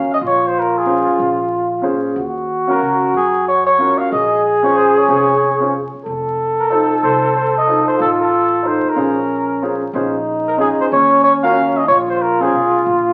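A bucket-muted trumpet carries the veiled, smoky melody up front, with a bright, punchy trombone beside it on a second line, a woody upright bass underneath, and a natural-toned grand piano comping from 0.9 s, in a cool, swinging small-group jazz waltz in Bb minor at 185 BPM, heard through the crackle of a very old 78 rpm record and a wet, large studio reverb.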